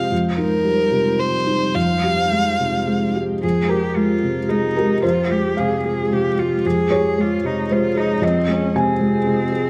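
A soft, intimate felt-muted upright piano with audible action noise opens this reflective, longing neoclassical fragment in F minor, moving at a rubato 104-118 BPM in 3/4 beneath a very quiet, cloudy granular pad and an expressive solo violin melody with vibrato and portamento; after the violin stops at 3.2 seconds, a focused, smooth-topped cello enters at 3.4 seconds with a second line carrying slapback echo, the whole heard within a moderate scoring-stage reverb.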